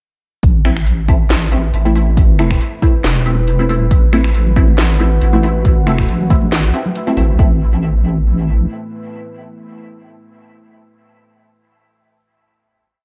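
A brooding, cavernous deep dubstep piece opens at 0.4 seconds straight into its drop, where an overdriven electronic kick sits up front in a half-time beat alongside a garage kit of finger snaps, crisp hats and a cracking snare with a tape-warm tint. Beneath them a deep, soft wobble bass with chorus carries modulated phrases whose wobble speed changes, dark and compressed at the front of the mix. Muted, detuned chord stabs with a filter pluck arrive on the off-beats, one shape moved in parallel, colored by phaser, ensemble chorus and dub echo. From 1.4 seconds a moody, wave-folded ambient pad with ring modulation, chorus, its own reverb and a gritty 12-bit sampler character settles in underneath with slow attack and long release, and soft-handed, band-limited congas echo in the background between 4.1 and 7.2 seconds. The drums fall away by around 7.4 seconds and the bass lingers until about 8.7 seconds, while the pad and stabs hold a final chord in a dark, close production.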